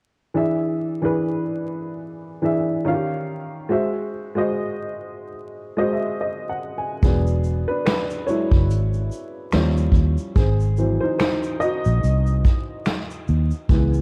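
Nostalgic and dreamy, this lo-fi hip hop piece with a gentle swing opens on a dark, woody upright piano softened by cassette tape and a low-pass filter, moving through E7, D#9 and G#7b13 into a fill at 5.4 seconds before taking a solo at 7.0 seconds, when a round, foam-muted electric bass and a brush kit of finger snaps, hi-hat, punchy kick, snare and shaker join, framed by light reverb and vinyl crackle.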